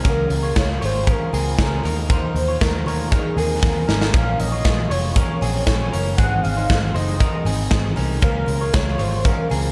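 Light reverb and a small-room ambience frame this sunny, breezy stretch of jangly indie pop, cut from a longer piece, where a punchy, up-front rock kit holds a straight 4/4 beat and drops a fill at 3.6 seconds. A round, foam-muted vintage bass and a lo-fi, slightly broken-up electric guitar playing arpeggios through spring reverb and slapback echo sit under a velvety, detuned synth lead that carries the melody with chorus, phaser and vibrato. Further back, a picked twelve-string acoustic guitar adds shimmering, octave-doubled accompaniment with slapback echo as the chords move from Db6 through Ebsus2, Bbm and Ab before returning to Db6.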